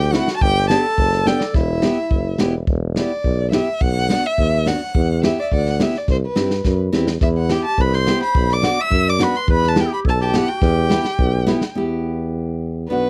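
Soulful and bittersweet, this klezmer excerpt in 2/4 puts an expressive bowed violin up front, rich with vibrato and portamento, in a close, dry 1970s-style studio sound. A distant, roomy clarinet adds a classical-style second line that drops out early and returns at 7.2 seconds, while a jazz-style tuba with light vibrato carries the bass and a fingerpicked nylon-string guitar with fresh strings plays accompaniment. A saturated, gritty breakbeat kit with a tight kick and rolled-off top plays kick and snare with occasional fills, the violin takes a solo from 2.7 seconds, and the drums stop at 11.8 seconds.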